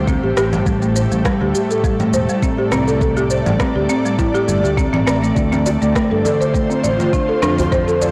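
A lightly swung 102 BPM groove in 4/4 drives this mystical, warm organic downtempo excerpt in A minor, where a soft, overdriven electronic kick and gritty electronic shaker, rim click and congas sit under a woody, rustic marimba playing up-front arpeggios with delay, a growly, amped fretless electric bass with transformer saturation, and an ethereal, detuned pad of sustained Am7 and Dm7 chords with ensemble chorus and sidechain pumping, while a rattling djembe joins in the background at 5.7 seconds, all inside a lush hall reverb and a blown-out, overdriven recording.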